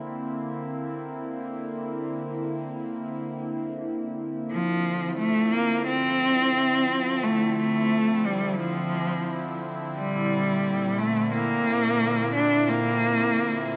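Bathed in a lush hall reverb, this cerebral, glitchy IDM fragment opens on a warbly, detuned, nostalgic tape-like pad holding sustained chords through chorus and phaser, until a clear, focused bowed cello with vibrato and digital delay takes up the melody at 4.5 seconds, both parts sitting up front until the cut at 13.8 seconds.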